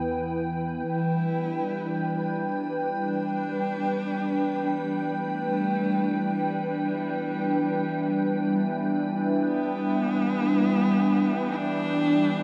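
Bathed in a huge, wet reverb, this reflective, spacious ambient excerpt in free time and E minor opens on a glassy, warbling FM pad holding sustained chords up front with ensemble chorus, over a deep, round analog bass note that sounds only until 0.8 s, while a nasal, evolving chorused analog drone and a rich, boxy bowed cello melody from a single player, with vibrato and portamento, both fade in from 0.9 s.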